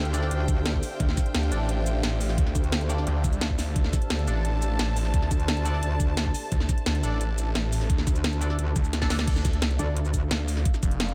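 Dark and mechanical, this cut from a longer dark technical drum and bass track stays in a straight 4/4 drop throughout. An up-front, knocking electronic kick sits under a layered kit of cracking snare, metallic hi-hats, shaker and crash cymbal, both with a tape-warm, small-room character, and a drum fill arrives at 8.9 seconds. Two basses drive the low end: a snarling, growling detuned saw bass enters at 1.0 seconds, distorted and overdriven with a moving notch, while a metallic FM wobble bass with chorus and distortion plays in two separate stretches. Behind them, a deep, moody pad of evolving detuned saws with a sub octave, chorus and built-in reverb pumps against the sidechain, joined by a lush, woody bowed string section that also pumps until it stops at 9.3 seconds. A nasal, band-passed chord stab with wave-folding, ring modulation, phaser and delay sits in the background, and light reverb gives the mix a compact sense of space.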